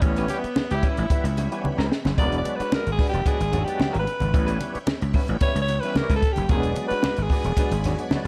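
Strutting and energetic, this funk clip at 111 BPM in straight 4/4 features a breathy, raspy alto saxophone soloing over a band accent and a drum fill that lands at 2.2 seconds, as the chords move between A9 and E9. Up front, a growly overdriven slap bass and a compact cocktail kit with a high-tuned snare and punchy kick drive the groove, while low-tuned congas, a slightly broken-up electric guitar through a small old amp, and a thick overdriven tonewheel organ with chorus vibrato and slow rotary speaker sit in the background. A brilliant trombone adds a forceful scooped note from 0.3 to 0.9 seconds, and a very quiet, shimmering string machine holds sustained violin chords, all within a dark production with light small-room reverb.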